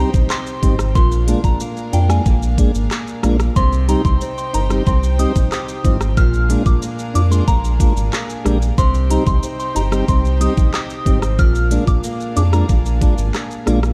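A deep, round analog bass sits up front alongside a knocking, layered electronic pop kit of kick, crisp hi-hat, rim click, handclaps and shaker in this tough, hypnotic dancehall excerpt at 92 BPM, cycling between Cm and Bb7. A mellow tonewheel organ with key click and slow rotary speaker pumps under sidechain compression, a bright fingerpicked flamenco guitar plays tape-echoed arpeggios, and an earthy, distant chamber string section holds sustained chords. Above them, a pure FM synth bell carries the melody through chorus, phaser and tape echo until 12.7 seconds, all in a dark production with light reverb.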